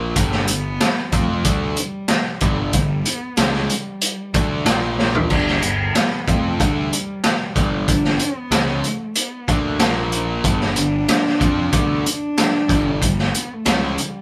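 Quiet-loud alternative rock with an anthemic, restless mood, cut from a longer piece: a bright, cranked stack guitar with overdrive and a crunchy overdriven guitar treated with phaser share the riff over a fuzzy, overdriven picked electric bass, while a dark, bowed cello sings the melody with vibrato and portamento, and a gritty raw garage drum kit with a boomy kick sits up front, breaking into a short fill at 5.0 seconds, all played live in one room with moderate studio ambience.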